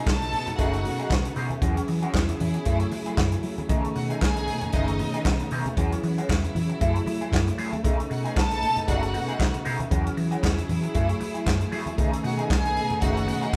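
A punchy vintage drum kit sits up front in this joyful, celebratory disco excerpt, its medium-tuned snare, kick, hi-hat and handclaps carrying a lightly swung 4/4 groove with a rolled-off top. A dark, round fingered electric bass enters alongside it at 0.1 seconds, while very quiet, low-tuned congas with a thin, bright skin add soft hand percussion. A lush violin section with expressive vibrato plays a second line from a distance, set against a clear, biting symphonic string section holding close, focused sustained chords. A twangy electric guitar at the edge of break-up picks an accompaniment through a wah, and a mellow tine electric piano stays clean and in the background. The harmony cycles through rich chords such as B13, E69 and F#m9, and the whole band sounds as if it is playing live together in a moderate stone room.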